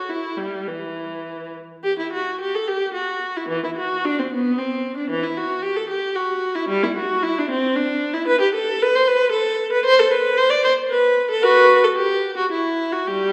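Dance-like and serene, this excerpt from a baroque-style suite movement sets a single bowed viola alone in a lilting triple metre, its phrasing flexible. The instrument sounds warm, smooth and even, with vibrato and a smooth top, placed up front yet carried by a generous recital hall reverb that suggests a listener seated further back. A new passage begins at 1.8 seconds and runs to the close at 13.3 seconds.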